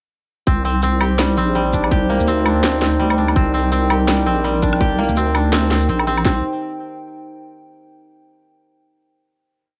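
Spacious and cinematic, this short half-time drum and bass piece rides a swung sixteenth feel. From 0.5 seconds a dark, nasal, detuned analog pad holds sustained chords with chorus, sidechain pumping and cassette tape colour, while a woody, fingerpicked koto repeats a 16-step arpeggio through tape echo, and a deep, soft wobble bass with chorus sits up front on long notes. Two layered electronic kits drive the drop, one with a tight kick, cracking snare and crisp hats, the other a sparse pattern of shaker, closed hat, low woodblock and snare, both in a small room, before a final chord from 6.3 seconds closes the piece with the feel of a light-reverb home cassette recording.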